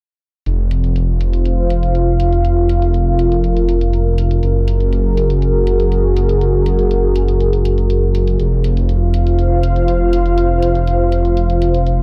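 A deep, rumbling detuned saw bass and a quiet, low-pass-filtered electronic hi-hat open this hypnotic, cinematic melodic techno excerpt at 0.5 s, moving at 121 BPM in a straight 4/4 in F phrygian, tuned to A4 = 436 Hz. At 1.1 s a moody, full-bodied analog pad with chorus arrives, holding slow-attack chords that shift from F5 to Gbadd9 at 4.4 s and back to F5 at 8.4 s. The bass and pad sit up front in a dry mix.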